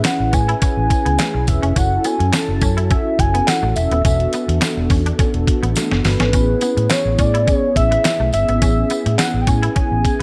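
A straight 4/4 groove from a detuned 8-bit drum machine with a thumpy kick, handclaps and a drum fill at 5.8 seconds drives this danceable, feel-good early-eighties boogie funk excerpt, where a round, punchy foam-muted fingered bass sits up front beneath mellow, full-bodied chorused synth brass, a twangy clean guitar riff, a jingly tambourine in the background, and a velvety, smooth synth lead with tape echo carrying the melody over Amaj9, F#m7 and E9sus4 chords in a dry, close sound.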